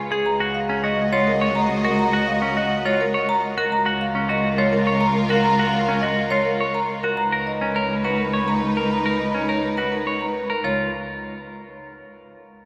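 A close-miked marimba struck with medium hard mallets carries the melody, its bright, percussive, dry tone sitting at the front of this propulsive classical piece of minimalist pattern music in 3/4. Beneath it, a clean, compressed, twangy electric guitar picks arpeggios, while a lush studio string section holds sustained chords with focused, vibrato-rich bowing. A single warm cello anchors the bass, bowed expressively with vibrato and portamento. The harmony moves from Ebm7/Db to Cbmaj7/Db at 7.2 seconds, and the strings drop out at 10.5 seconds before the music settles on Db as a new section begins. The whole performance sits in a church-like hall whose long cathedral reverb gives this short cut from a longer work a spacious, resonant glow.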